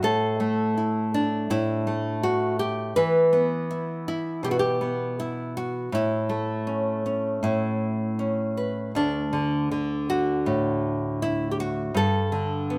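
A bright, up-front nylon-string guitar rings out in a moderate stone room reverb, giving the recording a live, airy presence. This is a short folk piece for solo fingerstyle guitar, played in a straight 4/4 with a hopeful, peaceful mood. The guitar is fingerpicked in a classical manner and carries the whole performance alone from the first second to the last at 12.8 seconds, ranging from D2 up to B4. Its harmony moves from open fifths on A and E into A and D major chords, then arrives on a Gsus2 at 12.0 seconds. Cut from a longer piece, this fragment captures a calm, open-hearted moment carried by the resonance of the stone room.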